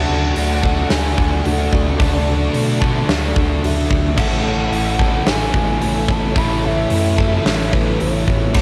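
Lightly reverberant like a home cassette recording, this wistful, dreamy shoegaze and dream pop rock excerpt moves at 110 BPM in A major from Dmaj7 to Aadd9, as a pure, breathy sine lead carries the melody through chorus, phaser, tape and analog delay over vintage string-machine violas, a very quiet bright twelve-string electric guitar playing arpeggios, riffs from two overdriven electric guitars (one double-tracked and dark) and a thick fuzz guitar, a deep, round sub bass, and a huge arena drum kit with a fat snare, punchy kick and bright cymbals that enters up front at 0.4 seconds.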